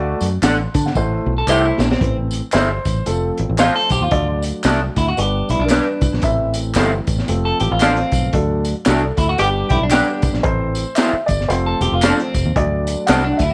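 A roomy, gritty mix carries this cut from a longer uptempo 1960s-style soul piece in A minor, moving at 114 BPM with a swung feel and a passionate, urgent mood. A crunchy, saturated breakbeat kit with a punchy kick and high-tuned snare rides over a foam-muted fingered electric bass, while a twangy clean electric guitar picks out a riff, a lo-fi, slightly broken-up guitar through a small old amp adds stabs bathed in lush chorus, and compressed tambourine and handclaps sit low in the mix. After a drum fill, the dark, woody upright piano takes a solo from 2.0 seconds, and a jazz-style horn section briefly adds a second line at 9.4 seconds during a band accent.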